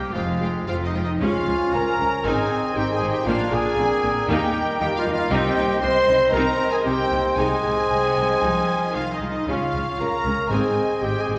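In a straight 4/4 pulse, this swashbuckling, determined cinematic cue sets a lush violin section on the melody over a second violin line, while violas, distant cellos and expressive double basses fill out the bowed accompaniment and bass with vibrato. A clear solo trumpet punctuates with stabs and a very quiet, close-miked clarinet traces a second line, before mellow French horns enter with sustained chords at 0.7 seconds. Bright trombones, an airy hollow flute and a smooth cor anglais join at 1.2 seconds, all heard from further back in a reverberant scoring stage.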